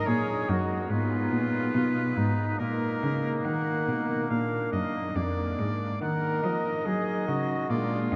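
A slow, straight 4/4 pulse at 70 BPM carries this short baroque-style sonata movement in Eb minor, a flowing, grave fragment cut from a longer piece. A trumpet leads the melody up front, its light vibrato giving a warm glow even as its tone sounds distant and roomy. Above it, a bright, present oboe sings a second line, also with a gentle vibrato. A pipe organ on foundation stops supplies thick, romantic accompaniment, while a single bowed cello anchors the bass with a rich, reedy gut-string tone in period style. All four parts play throughout the 8.2 seconds, moving from Ebm through Fm7b5/Ab and Bb before settling back on Ebm at 6.0 seconds. A huge, wet reverb places the ensemble in a vast, echoing space.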